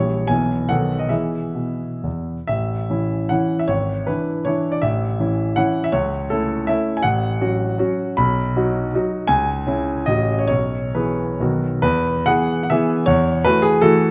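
A warm, smooth grand piano sits up front alone in this graceful, proud romantic triple-time dance, its dotted rhythms moving with rubato through a brief opening idea, a longer contrasting passage from 2.5 seconds and a return at 11.8 seconds, all captured by close, detailed microphones in the moderate reverb of a scoring stage.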